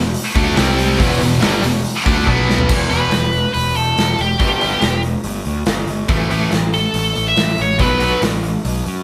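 Hard rock in E minor at 141 BPM, this menacing, aggressive excerpt opens with a bright, overdriven stack guitar with tremolo and two distorted high-gain guitars, one double-tracked, riffing in the background over a round, fuzzed bass and a big-room acoustic drum kit with a punchy kick and bright cymbals. One high-gain guitar drops out at 2.7 s, just after a drum fill, as the riff moves through E5, G5, A5 and B5 power chords. At 2.9 s a nasal lead guitar with a parked wah takes the melody up front, all captured as a band playing live in one room with light reverb.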